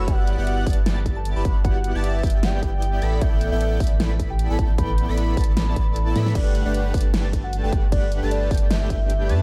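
Riding a half-time 4/4 pulse at 153 BPM with a light swing on the 16ths, this lush, euphoric future bass fragment in G major pairs a punchy layered electronic kick with a big-room kit of huge snare, hi-hat and crash (including a drum fill at 6.2 s), while a deep, thick saturated sub bass sits up front and a detuned, smooth supersaw riff, a round, dark octave-layered lead melody with vintage 12-bit sampler grit, and a mellow, airy background arpeggio lead with portamento all pump against the sidechain through chorus and delay over Em9/G, A9sus4 and Gmaj9 chords in a light reverb.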